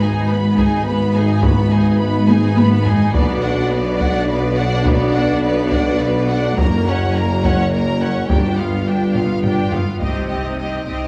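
Bathed in moderate scoring-stage reverb, this dark, dramatic excerpt of epic orchestral film score moves at 70 BPM in 6/8, with lush, warm violins carrying the melody and a smooth second line above clear, intense violas, while mellow French horns sustain chords and rich cellos, woody double basses and a distant, roomy tuba hold the bass beneath taiko drums struck with hard sticks from 0.6 s, passing through drum fills to a huge, bright yet very quiet impact at 10.0 s over a closing C minor chord.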